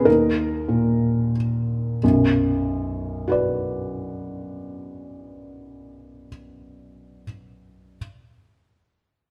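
A soft, felt-muted upright piano opens this reflective, intimate fragment of neoclassical minimalist music, slowing over the first 2.0 seconds before settling on a B minor chord as a new section begins, its mellow, short-sustained tone sitting up front with audible action noise inside a wet recital-hall reverb, moving in a rubato 3/4 around 95 BPM.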